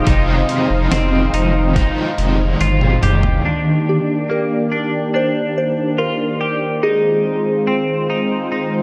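A crunchy, double-tracked overdriven guitar with tremolo and ensemble chorus opens this dreamy, blissful dream pop excerpt at 71 BPM in Eb major, alongside a lush, warbling sawtooth unison pad and a bright, twangy clean electric guitar picking chorused arpeggios into diffuse ambient delay. A deep, thick saturated sub bass and a gritty, thumpy sampler-style drum kit with overdrive drive the opening over Fm7, with a drum fill leading them out at 3.4 seconds as the chords move to Ebmaj7. A soft, pure FM synth bell melody with phaser and delay enters at 3.9 seconds, floating through a mix soaked in a long plate reverb with a faint mains hum beneath.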